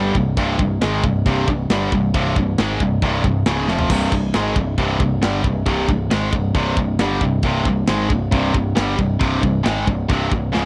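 A tight, distorted guitar riff leads this relentless, aggressive heavy metal excerpt, its bright, double-tracked tone sitting up front over a growly, overdriven picked electric bass in a straight 4/4 built on a C5 power chord. An acoustic metal kit with a tight kick, medium-tuned snare, toms, crash and china cymbal sits mid-forward with a rolled-off top, dropping a drum fill at 3.7 seconds. The dry, close sound has the small-room feel of a 1970s studio, and the passage is cut from a longer piece.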